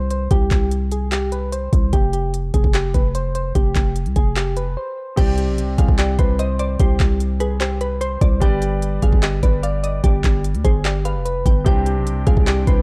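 A growling, buzzy 808-style bass sits up front alongside a knocking trap drum kit with crisp hats, crash and handclaps, driving this eerie, menacing hip hop and trap excerpt at 148 BPM in a half-time feel, while soft, round electric-piano-like synth keys carry a mellow, chorused melody through a low-pass filter. After a short break ending at 5.2 seconds, a bright grand piano with audible action noise adds accompaniment and a crystalline wavetable pluck with chorus and digital delay plays a second line in the background. At 12.0 seconds an ethereal FM pad enters very quietly with sustained chords, all within a dark, digital ambience.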